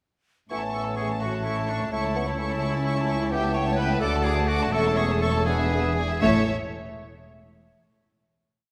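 Lively and spirited, this short classical-period movement for symphony orchestra in A major moves in a quick 6/8 at about 78-87 BPM, its rich violins carrying a rocking two-note melody over a second violin line, a bright oboe doubling the tune, mellow flutes and a distant clarinet weaving inner lines, a clear viola section adding a lush melodic line in the background, a present bassoon and dark horns filling sustained chords, and warm cellos with portamento sustaining the bass, doubled by a smooth double bass, all set in a wet scoring-stage reverb as the tempo slows from 2.6 seconds into a final chord at 6.2 seconds.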